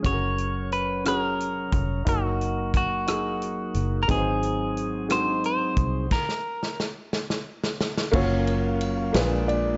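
A clean, picked electric guitar with slapback echo carries the hopeful melody up front in this slow 6/8 gospel piece in F# major at 59 BPM, over a woody upright piano, a flute-like tonewheel organ with key click and fast rotary speaker, a round, foam-muted fingered bass and a punchy natural country drum kit that plays a fill through the stop from 6.1 to 8.1 seconds before a soft felt-muted piano note closes at 9.5 seconds.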